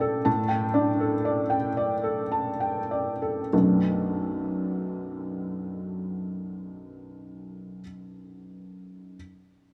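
Neoclassical minimalist piano in B minor, reflective and melancholic, drifting at 48-64 BPM in a rubato 3/4, this short excerpt features a solo felt-muted upright piano, intimate, boxy and up front with audible action noise, that slows over its first 3.5 seconds on an A7sus4 before settling onto Bm7, all set in a small room ambience inside a moderate, huge ambient reverb with a 7.2-second tail.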